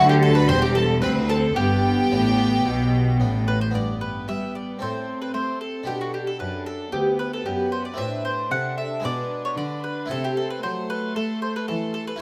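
A brilliant, lively baroque-style concerto movement, cut from a longer piece, with a bright, round, picked mandolin carrying the melody up front. Two smooth vibrato violin sections sit in the background on a high line and a second line, while an airy harpsichord and a lush viola section fill the accompaniment over a clear, distant cello section. A rich double bass section anchors the bottom only until 3.7 s, and the close, detailed sound sits in a moderate recital hall reverb.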